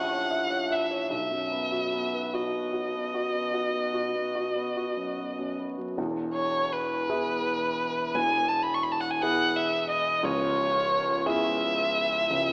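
Heard through vinyl crackle and an AM-radio sound, with a moderate scoring-stage reverb, this brief cut from a longer romantic classical duo for violin and grand piano unfolds in E major at a lyrical, serene 48-59 BPM in a rubato 12/8. Up front, a single bowed violin carries the melody with a focused tone, vibrato and a smooth top, while the grand piano, present and warm with long sustain, accompanies from the low bass up through the middle register. The harmony moves from a diminished opening through B to a settled E major chord at 6.0 s and turns to C#m7 at 10.2 s.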